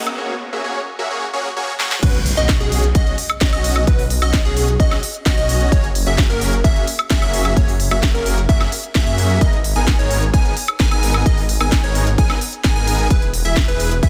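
Huge, lush supersaw chords carry this triumphant, uplifting festival progressive house excerpt, pumping against the sidechain and trailing tape echo throughout. The opening two seconds are a build-up, with a filter sweep on the supersaws, drum fills from the house kit and a very quiet riser. At 2.0 seconds the drop arrives with an impact, and a punchy, up-front electronic kick enters alongside a thick, menacing detuned saw bass that is saturated and dark. At the same moment a bright, catchy plucky unison lead plays arpeggios through a phaser and tape echo. The kit adds a cracking snare, crisp hats, crash cymbal and woodblock, and the harmony moves from Bsus2 through F#add9 and G#madd9 to E. Light digital reverb surrounds a dense, heavily limited modern master.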